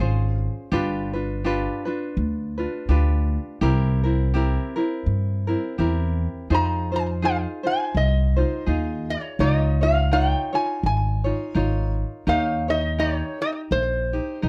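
Dreamy and sunny, this swung Hawaiian excerpt at 83 BPM sets a bright, fingerpicked tenor ukulele over a woody, thumpy pizzicato upright bass on gut strings, while a nasal, metallic resonator slide guitar with slapback echo sounds briefly at the start and returns at 6.5 seconds to carry the melody, all captured in a dry, close 1970s-style studio sound.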